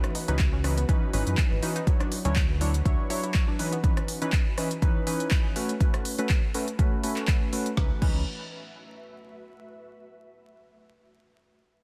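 Deep and smooth, this deep house excerpt at 122 BPM in C# minor moves through C#m9, Dmaj9 and A69 chords, carried by round analog key stabs with chorus, tape echo, sidechain pumping and a filter sweep over an up-front electronic kick. A drum kit with a woody snare, smooth hats, handclaps, rim clicks and crash surrounds it, while a dark, detuned analog bass plays until 3.0 s and returns at 7.8 s, and a bright, wave-folded pluck arpeggio drifts in the background from 0.2 s to 3.8 s. An ethereal, airy pad with tremolo and ensemble chorus fades out beneath, and the dense, heavily limited master carries a layer of vinyl crackle.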